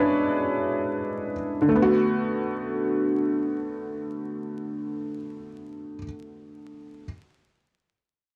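Unmoored from any steady pulse, this fragment of a hip hop piece drifts in free time, its mood nostalgic and hazy. A felt-muted upright piano, tuned to A4 = 443 Hz, carries the whole accompaniment from 0.0 to 7.1 seconds, ranging from D3 to E5 in B dorian. Its tone is mellow and intimate, with a thin felt and audible action noise, and a cassette tape treatment colours the instrument as it sits up front. The piano opens alone on an E13/G# chord, then settles onto Bm7 at 1.7 seconds as the passage moves into its second section. A moderate studio reverb, a dark, warm production and a layer of vinyl crackle wrap the recording in a nostalgic haze.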